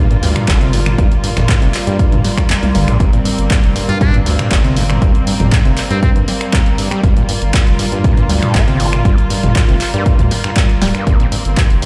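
Bowed, biting studio strings with light vibrato and a deep, saturated sine sub bass both pump from the start of this trippy, hypnotic acid house excerpt, beside a squelchy, gritty acid bass riff with distortion and delay set back in the mix, while a tape-warm analog drum machine of finger snaps, handclaps, hi-hat, snare and toms and an up-front, punchy electronic kick drive it, the kick dropping out for a drum fill from 2.5 to 3.0 seconds before a buzzy, metal-muted jazz trumpet with vibrato adds a brief delayed melody from 3.9 to 6.1 seconds, the mix sounding as if played on a big sound system in a bare room with large reverb.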